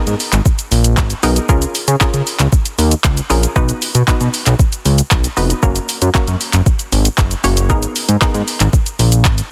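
Upbeat and summery, this dance-pop excerpt sets a hollow, nasal square-wave pluck with chorus against a fat, detuned sawtooth analog bass, both pumping with sidechain, over an up-front electronic R&B kit of soft kick, handclaps, hi-hat and shaker, framed by light reverb and a dense, heavily limited modern master.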